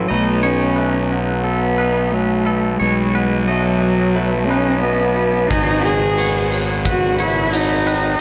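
Hopeful and soaring, this post-rock excerpt at 89 BPM in 4/4 sets a dark, woody bowed cello melody with vibrato and slapback echo up front over a growly, fuzz-overdriven fingered electric bass, while two background electric guitars play arpeggios through analog delay, one slightly broken-up and lo-fi through a small old amp and the other clean and picked with harmonic tremolo, as a very quiet, bright pedal steel guitar adds sustained slide chords with volume swells, all in a lush hall reverb over a shift from B7 to G#m7, where a huge arena drum kit with a punchy kick and hi-hat enters at 5.5 s.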